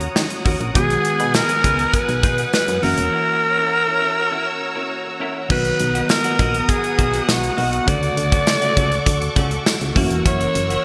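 A raspy, gritty alto saxophone carries the melody up front from 0.8 s, its bright vibrato trailed by digital delay, in this glossy, uplifting excerpt of 1980s-style pop at 101 BPM in B major, tuned to A4 = 437 Hz. A punchy, round FM bass and a modern studio drum kit with a punchy kick, bright cymbals and gated reverb drive the straight 4/4 groove, with a barely audible, jingly tambourine behind them. A soft, dark FM electric piano, sawtooth string-machine violas with ensemble chorus, and a clean, hollow-body guitar riff in the background fill out chords moving from D#m7 to Bmaj7 and Dmaj7, with a break at 3.1 s and a lush hall reverb over the bright digital production.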